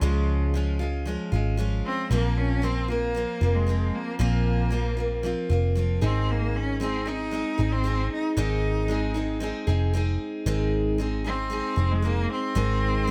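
A straight 4/4 pulse at 115 BPM carries this easy-going, heartfelt acoustic pop excerpt, tuned to A4 = 444 Hz and moving from Db to Bbsus2 to Ab. A foam-muted vintage electric bass gives a round, punchy, dark low end, while a picked steel-string acoustic guitar rings bright and close beneath a single bowed cello whose biting, intense vibrato carries the melody. Light reverb lends the short clip a gentle sense of space.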